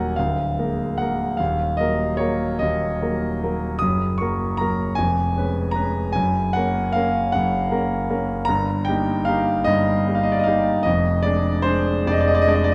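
A slow, rubato 12/8 sway at 50 beats per minute in dotted quarters carries this nostalgic, serene romantic nocturne fragment for solo concert grand piano, whose clear, up-front tone with deep bass and long sustain spans D1 to Eb6 and moves from Bb7/D and Eb minor through Gb and Db7/F before settling into Eb major at 8.5 seconds, all bathed in a wet recital hall reverb within a dark production.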